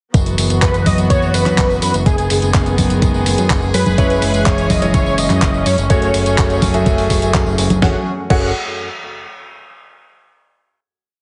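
Danceable and nostalgic, this short italo disco piece runs at 125 BPM in 4/4 with a straight feel, sitting in F# dorian as the chords move from Esus2/F# through G#m/F# and C#m/F# to F#madd9, then rest on a final chord from 7.8 seconds. A thumpy, tape-warm electronic kick drives a four-on-the-floor pulse, joined by a sampler-style disco machine beat of fat snare, claps, closed and open hats, tambourine, high conga and crash, both re-recorded in a small room. Underneath, a thick, detuned analog bass blends sawtooth and square waves in a sequenced sixteenth-note line, with a filter sweep and moving notch shaping its tone. A rich chamber string section with a reedy, gut-string, period-style character holds a bowed sustained pad, while from 0.6 seconds a bold unison lead of detuned sawtooth and triangle waves, wave-folded and ring-modulated with vibrato, ensemble chorus and digital delay, states hook-like motif phrases. 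At 4.0 seconds a natural grand piano adds held drop2 chords with syncopated pushes through its own delay, all under light reverb and a heavily compressed, radio-like sound with muted top end.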